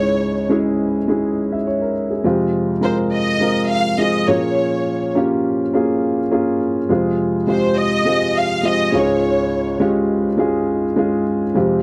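A dry, close recording with a 1970s studio character frames this short, anthemic and hopeful pop fragment, cut from a longer piece. A dark upright piano carries the accompaniment with a woody, boxy tone, long sustain and audible action noise, moving through chords from Dbm to Db. Up front, a lush bowed violin section sings the melody with smooth, even vibrato and a touch of slapback echo, falling away at 9.8 seconds while the piano continues to 11.8 seconds.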